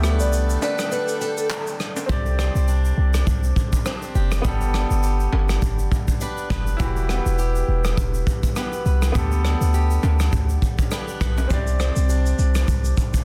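A bouncy, sunny dancehall excerpt at 102 BPM in G major opens on a break, where a blurred granular cloud pad with built-in reverb and sidechain pumping sits in the background while a round, soft-mallet marimba with digital delay plays a brief woody melody from 0.2 to 1.5 seconds. Beneath it are a brilliant grand piano accompaniment, also pumping and carrying audible action noise; boxy picked swing-style acoustic guitar arpeggios; a deep, boomy 808-style bass up front; a roomy brush kit with a punchy kick and a softly clipped snare; and distant tube shaker and timbales. The pad stops at 2.1 seconds as the hi-hats drop out and the groove moves through Csus2, Gadd9 and Emadd9 chords in a small room, all under a dense, heavily limited modern master.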